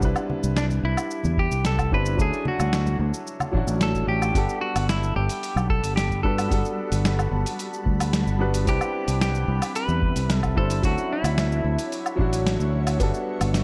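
This blissful, sunny sunset chillout excerpt in G major opens at 111 BPM with a clear, worn baby grand piano through digital delay, a round, punchy fingered bass up front with tube saturation, a gritty sampler-style soul kit of cabasa, hi-hat, snare and woodblock, a deep, overdriven electronic kick, and faint, bright congas. A bright, clean semi-hollow guitar carries the delayed melody over lush Cmaj9, Dmaj9 and Gmaj9 chords, while a shimmering, ethereal ambient pad with chorus drifts into the background from 5.9 seconds. Near the close, at 13.0 seconds, a buzzing, woody kalimba plucks briefly through delay, all within a dark, lightly reverberant production.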